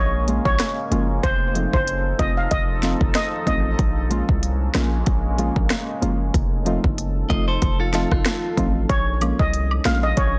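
Sultry and bouncy, this short dancehall cut from a longer piece moves at 94 BPM in Bb minor with a lightly swung sixteenth-note feel, circling between Bbm7 and F7. An up-front afro-pop drum kit, electronic and produced with a deep kick, sharp snare, smooth hi-hats and rim clicks, sits alongside a hard-hitting 808-style bass that is punchy and heavy, with a sine body, a noise layer and a fast, decaying attack. A metallic, shimmering steel pan carries the melody with tape echo, close and full, opening the piece and returning at 8.9 seconds. Beneath it, deep mellow chord stabs blend triangle, sawtooth and sine tones with a filter sweep and chorus, while a moody ambient pad of detuned, wave-folded sawtooths with a sub octave and ring modulation holds sustained chords, pumping with sidechain compression through its own reverb. A bright, twangy clean electric guitar adds picked arpeggios with spring reverb at 7.3 seconds, and cabasa and woodblock, with egg shaker and group handclaps, join near the end in a dense, heavily limited modern master with light digital ambience.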